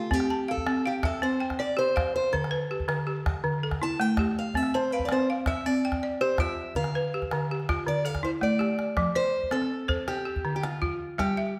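Woody, buzzing balafon arpeggios, struck with hard rubber mallets and sitting dry and up front, carry this flowing, warm excerpt of traditional West African string and xylophone music at 108 BPM in 12/8. A boxy, picked archtop guitar with old strings plays the melody over chords moving from C through D5 and Dm, while a deep calabash keeps the percussion going with a small-room sound. A fill at 8.2 seconds leads into a second section built on F and Dm, and a recital hall reverb lends the mix its space.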